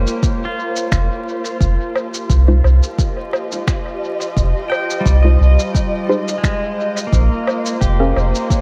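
A relaxed 87 BPM groove in 4/4 with a light 16th-note swing drives this deep, meditative ambient dub fragment in F minor, tuned to A4 = 435 Hz. An overdriven electronic kick and a muffled, pitched-down set of cabasa, finger snaps and woodblock with dub echo sit beneath a round, up-front sub bass. A dark, woody string section fades in on lush sustained chords moving from Bbm through Fm7 to Bbm7, a clean pedal steel guitar plays low-passed arpeggios into dub echo, and from 2.5 seconds a detuned sawtooth chord stab with chorus and echo adds mellow, evolving colour, the whole set in an echo-heavy mix with vinyl crackle.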